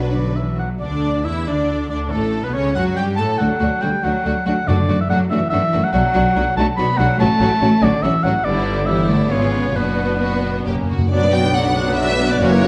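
Urgent and restless, this orchestral passage cut from a longer classical piece moves at 141 BPM in a rubato 3/4, starting in D major and turning to B minor from 5.9 s. A bright, focused first violin section carries the melody over a smoother second violin line, while an up-front oboe with a smooth top and light vibrato adds its own second line. A clear, distant viola section supplies the accompaniment, and a rich cello section and up-front double basses anchor the bass. A very quiet, mellow French horn section holds sustained chords at the opening and again from 11.1 s, and timpani played with medium mallets sound briefly at 4.7 s before returning with a fill at 10.7 s. At 11.1 s a new section brings in a very quiet, mellow clarinet, a pure, hollow flute section and a background bassoon, all heard through a moderate scoring-stage reverb.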